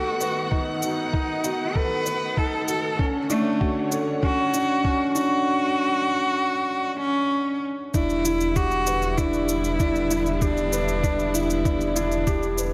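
A rich, expressive cello melody with portamento and delay opens this melancholic, cinematic piano and strings electronica piece, cut from a longer work, over smooth, pumping chamber string chords and a dark, intimate felt-muted upright piano riff with audible action noise, soon joined by an electronic shaker and a muffled, thumpy kick drum, before a deep, round analog bass arrives with the drop at 7.9 s, the whole mix sitting in a moderate recital hall reverb.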